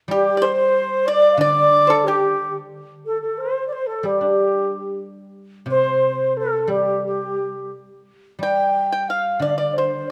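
Chinese traditional chamber music in a pastoral, graceful mood, moving at a rubato 90 BPM in 2/4 in G shang mode, with a bright, reedy, straight-toned xiao carrying the melody up front over a breathy, mellow second xiao with vibrato in the background, a dry, percussive pipa heard from 0.1 to 2.5 seconds and again from 8.4 seconds, and a ringing, silvery guzheng accompanying low beneath them, all set in a moderate recital hall reverb with a dark production, cut from a longer piece.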